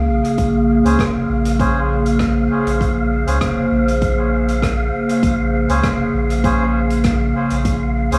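Ambient dub in Bb minor at 99 BPM, this meditative, deep excerpt rests on a single Bbm9 chord held by a warbling, nostalgic tape-like pad with chorus, sitting up front over a round sine sub bass and an airy, wind-like tuned noise layer. A distant, roomy soft-mallet kit of hi-hat and rim click trailing dub echo enters at 0.2 seconds, followed by a deep, layered electronic kick at 0.4 seconds. From 0.8 seconds a reedy, breathy melodica adds filtered stabs, also soaked in dub echo, all within light small-room ambience and tuned slightly flat to A4 = 438 Hz.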